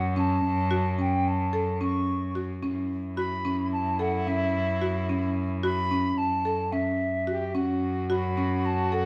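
Pensive yet urgent, this short contemporary chamber piece cut from a longer work moves in a brisk 9/8 at 219 BPM in F# Phrygian, with a mellow, hollow silver flute carrying the melody over woody, buzzing marimba arpeggios and a rich, nasal gut-string cello holding a low F#2 under an F#m7 chord, while a soft-edged French horn joins at 2.6 seconds with a quieter second line, all set back in a wet studio reverb.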